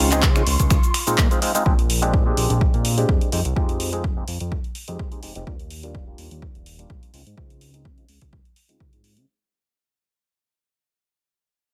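Filtered disco house at 126 BPM with a light 16th-note swing, funky and feel-good, cut from a longer piece as a filter sweep and fade-out run across its full length over Dbmaj7, Bb13, Fm7 and Ebmaj7 chords. A mellow, stringy clav with phaser and a fat, saturated sawtooth bass pump under sidechain, while a rich, bowed string section with vibrato sustains chords in the background only until 1.6 s. A dry, overdriven analog drum machine of cabasa, finger snaps, handclaps and hi-hat pumps alongside a punchy electronic kick that arrives at 0.2 s and sits up front.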